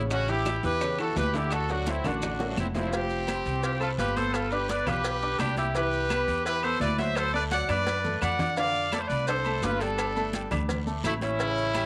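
Salsa at 170 BPM in G major, festive and sunny, this short cut from a longer piece puts a brilliant, punchy horn section up front on the melody over a thumpy, gut-string upright bass and a clear but worn concert grand piano comping through chords like A7, Cmaj7 and Gsus2, while ringing high-tuned congas, round low-tuned bongos and cowbell, metal-shell timbales and agogo bells, a raspy guiro, grainy maracas and woody claves (entering at 0.5 seconds) sit beneath, with drum fills at 2.0 and 7.7 seconds and light small-room reverb.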